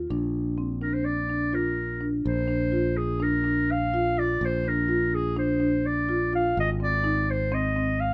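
A clear clarinet carries the melody in a classical style, entering at 0.8 seconds and sitting up front with a slightly distant, roomy quality. This is contemporary instrumental chamber music in Bb mixolydian with a hopeful, shimmering mood, moving in an uneven 9/8 at 250 BPM counted in eighths with a straight feel. Beneath the clarinet, a marimba played with medium mallets spins out arpeggios in a woody, mid-forward tone, and a modern fingered electric bass holds the low end with a growly, punchy edge. The harmony opens on Bb, moves to Bbadd9 as a new section begins at 2.3 seconds, and shifts to Ab at 6.6 seconds. Close, detailed microphones and a light reverb give the short passage, cut from a longer piece, an intimate, polished sound.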